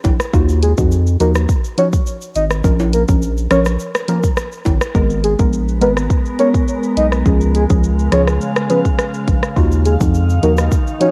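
Sultry and hypnotic, this short dancehall cut moves at 104 BPM in a straight 4/4, sitting in G# dorian with a light reverb and the hazy character of a home cassette recording. A thick, saturated sub bass and a punchy, up-front electronic drum kit of kick, hi-hat, rim click and shaker anchor the groove from the start, while bright, hard-hand timbales and egg shaker sit low in the mix, dropping out at 4.9 seconds and returning at 9.6 seconds. A soft, round pluck with a dark, wave-folded edge carries the accompaniment, pumping against the beat through chorus and tape color. Just after it, a full, octave-layered synth lead takes the melody with tremolo, vibrato and analog delay. From 5.6 seconds a glassy, ethereal FM pad fades in with slow-blooming, long-releasing chords, adding a mellow shimmer as the harmony moves through D#madd9, A#m, G#madd9 and C#.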